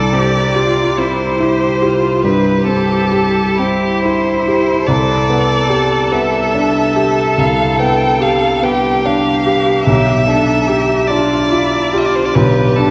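Serene and tender, this slow romantic movement for piano trio drifts in C major at 48 BPM in a rubato 12/8, tuned to A4 = 438 Hz, moving from C to G/C and on to G7/B. The focused, close violin carries the melody with bowed vibrato up front, while the distant cello sings a smooth, even second line beneath it, and the intimate baby grand piano supplies the accompaniment with its action noise audible. A wet church reverb and vinyl crackle surround this brief passage, which is cut from a longer piece.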